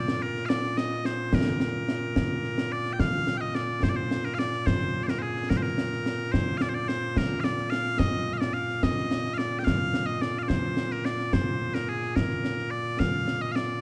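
Proud and ceremonial, this short cut from a longer piece of Scottish traditional pipe music moves at 72 BPM in a straight 6/8, set in B-flat mixolydian. Loud bagpipes carry the melody from the opening moment, their bright, piercing tone sounding as one continuous solo line that ranges from Bb2 up to G5 and sits up front. A concert snare drum and concert bass drum join at 0.1 seconds, acoustic and up front, with a live room feel and bright cymbals. After a brief opening passage, the music moves into a longer second section at 3.0 seconds that runs to the end. Light reverb surrounds the players, and the overall production leans dark and warm beneath the keen edge of the pipes.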